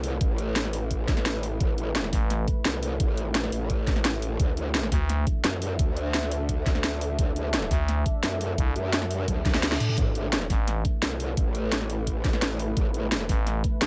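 Dry, this tense, futuristic cut from a longer dark technical drum and bass track runs at 172 BPM in A dorian, moving from Am to D before settling on an A5 power chord. An aggressive, wobbling growl bass with formant filtering and chorus sits up front beside an overdriven kit of cracking snare, bright hats and toms, plus a knocking electronic kick, while a thick FM bass bursts in briefly and then holds a longer run from 7.7 to 10.8 s. Behind them, a deep, moody pad of detuned sawtooth pumps against the sidechain, and a drum fill arrives around 9.3 s, joined by a reverse cymbal from 9.4 s.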